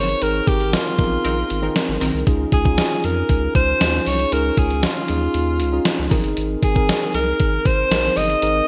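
Nostalgic and glossy, this short cut from a longer 1980s-style pop piece in Ab major moves at a straight 117 BPM, with a clear, vibrato-laden alto saxophone carrying the melody up front through delay over a mellow tine electric piano with subtle chorus, a deep, thick saturated sub bass, and a thumpy, up-front 12-bit drum machine bathed in gated reverb, while a punchy, detuned sawtooth polysynth adds chorused funky stabs between 1.2 and 2.2 seconds, all set in a lush hall for a bright digital sheen as the chords shift from Abadd9 to Dbadd9 and back.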